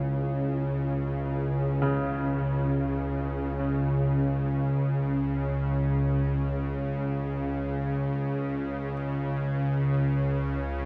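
A bright, string-like drone opens the recording up front, sustained across C#2 to C#3 with a slow attack, vibrato and a tense, detuned sawtooth edge carried on a noise layer and its own built-in reverb. A filter sweep moves over this drone for the whole 10.9 seconds, while a bronze singing bowl, struck with a wooden striker, rings barely audible beneath it with slow beating and a dark, meditative shimmer. At 1.8 seconds a clear grand piano enters in the background, playing arpeggios around C#3 with a boxy, short-sustained tone fed through tape echo. This dark ambient drone sits in free time on C# minor, and its mood is ominous and desolate. A huge, wet reverb with a 7.5-second decay surrounds the parts, and this short passage is cut from a longer piece.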